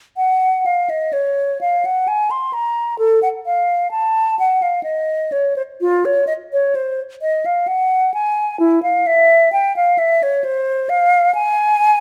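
In a rubato 3/4 at about 65 BPM, this flowing, serene excerpt from a baroque-style classical fantasia features a lone silver concert flute playing from 0.2 to 12.0 seconds, ranging from E4 to C6 and tuned to A4 = 443 Hz. The flute's tone is mellow, hollow and pure, with tongued notes and vibrato, heard close and up front. A moderate stone room reverb gives the line a gentle sense of space.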